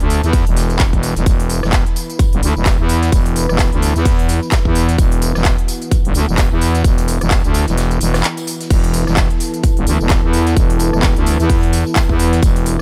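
A growling, thick FM bass opens this aggressive, bouncy bass house cut together with a dark analog pad and a big-room dance drum kit of crisp hats, handclaps, crash cymbal, rim click and tambourine. The overdriven bass sits up front with a fast attack and sustained notes, pumping against the sidechain, while the moody pad holds sustained chords in the background, its detuned sawtooth and triangle tones thickened by a sub octave, chorus and a slow attack with a long release. An electronic kick drum lands at 0.3 seconds, punchy, layered and tape-warm, and drives the groove from the front of the mix, while the whole track moves with a swung sixteenth-note feel. Underneath, a very quiet acoustic rock kit adds hi-hat, a medium-tuned snare and tambourine with a big-room character. A short break between 7.8 and 8.7 seconds interrupts the single section before the groove carries on. Cut from a longer piece, it sits in a small room ambience.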